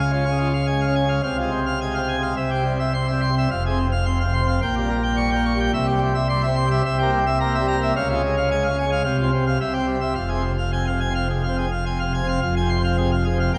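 A vinyl crackle sits under a wet church reverb with a long 3.7-second decay, framing a brief excerpt cut from a longer classical organ toccata in F minor at 108 BPM. A solo pipe organ on full plenum with mixtures, brilliant and baroque in voicing, stands up front across its whole 13.6 seconds, spanning F1 to Db6 through a stormy, majestic progression that moves from Db through C7 before settling on Fm at 10.2 seconds.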